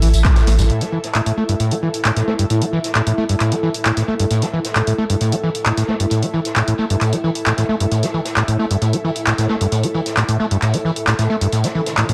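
This dark, warm-toned excerpt of driving peak-time techno sits in a moderate digital room, with a hypnotic, industrial mood at 133 BPM in a straight 4/4. An overdriven acid bass carries the riff throughout, squelchy and resonant with a filter sweep, its sawtooth edge thickened by lush chorus and tape echo and pumped by the sidechain. A saturated sub bass with a deep, thick sine body sits up front only for the opening 0.7 seconds, and the full band lands an accent at 0.2 seconds. A punchy analog drum machine drives handclaps, hi-hat and tambourine with a tape-warm character, while a raw garage kit of hi-hat and snare sits in the background, gritty and rolled-off in a small, pumping room. Above it a granular cloud pad drifts, blurred and evolving through its built-in reverb, and a very quiet riser appears at 11.8 seconds just before the cut.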